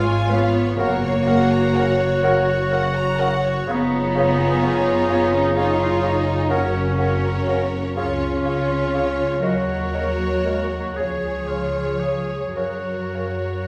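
A tender, lyrical classical passage, cut from a longer piece, opens with the full string body, oboe and French horns sounding together, with flute, clarinet and bassoon joining at 0.3 seconds. It moves in a flowing 6/8 with a free, rubato feel. Violins carry a focused melody on a single pitch, while a second violin line, lush and expressive with a gentle attack, moves alongside it in the background. The oboe, distant and roomy, adds a further line, and the hollow, airy silver flute and the close-miked clarinet contribute quiet counter-lines. Violas and a very quiet bassoon fill in the accompaniment, mellow horns hold vintage-toned sustained chords, and smooth, even cellos join an up-front, vibrato-rich double bass section to anchor the bass. A wet recital-hall reverb gives the ensemble the feel of a church or concert hall as the harmony settles from C#7/G# through D#m7 and home to F# at 12.6 seconds.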